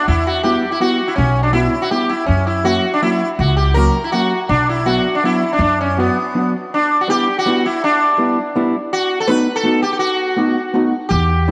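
Whirling and nostalgic, this brief musette waltz at 163 BPM in 3/4 sets a buzzing, shimmering sitar melody up front over a dark, clean hollow-body jazz guitar accompaniment and a woody pizzicato upright bass that drops out at 6.1 seconds before returning at 11.1, moving from B minor into E minor at 6.7 seconds through chords like Emadd9, F#, Bm, Em7 and B7, all bathed in a moderate plate reverb.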